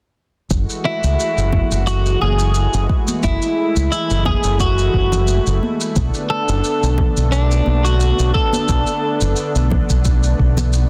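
A dense, heavily limited modern mix with a light small-room reverb frames this wistful sunset chillout piece, where a round, dark dub fingered bass sits up front beneath a lush, detuned, chorused pad moving from F#m9 to Bm7 at 6.0 seconds, a deep, layered electronic kick and a rolled-off shaker keep a gently swung pulse, ringing high-tuned congas enter in the background at 1.5 seconds, and a clean, compressed twelve-string electric guitar carries the melody through tape echo from 0.9 seconds.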